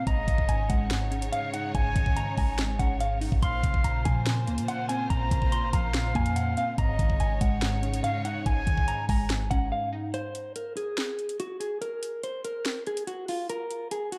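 Lightly reverberant, this eerie, menacing trap excerpt moves at 143 BPM in a half-time feel over Absus4 and Bbmadd9 chords. Up front, a trap kit with a knocking kick, sharp snare and metallic hats carries vintage 12-bit sampler grit, while a deep, boomy 808-style bass anchors the low end. Above them sit a dark, clean electric guitar melody with spring reverb and delay, an airy, reedy flute second line, glassy, detuned wavetable plucks with chorus, and lush bowed strings holding sustained chords. The bass stops at 9.7 seconds, and at 10.1 seconds the pluck and strings drop away, leaving guitar and drums through a break that runs to 14.2 seconds.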